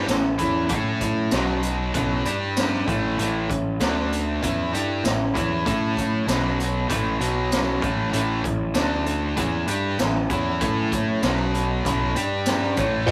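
Swaggering and sunny, this classic rock excerpt rides a cranked, bright stack-guitar riff and a punchy fuzz bass over a raw garage drum kit with a boomy kick, high-tuned snare, hi-hat, crash and tambourine, while a picked steel-string acoustic guitar chimes in the background, a very quiet slide guitar slips in only for the opening 0.7 seconds, a biting phaser-tinged overdriven guitar strikes at 13.1 seconds, and the rough rehearsal-room sound carries tube saturation and small-room reverb.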